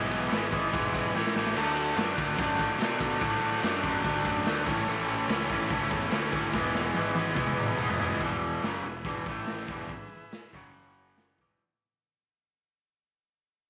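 A straight 4/4 pulse at 144 BPM drives this swaggering, raw garage rock cut in E mixolydian, taken from a longer piece. The raw garage drum kit sits up front with a punchy kick and medium-tuned snare, its lo-fi, muffled tone gritty and rolled off on top, ringing in a bright stone room, with fills at 1.1 seconds and again from 6.5 to 8.2 seconds. The overdriven, double-tracked guitar carries the riff up front, picked and bright with a touch of spring reverb, while the fuzz picked bass growls in the background with tube saturation. A vintage combo organ holds buzzy sustained chords, heavy with vibrato and very quiet in the mix. The harmony moves from E through A5, D and A before returning to E, and a second section begins at 8.2 seconds as the track fades out, touching A5, E, F#5 and E5 along the way.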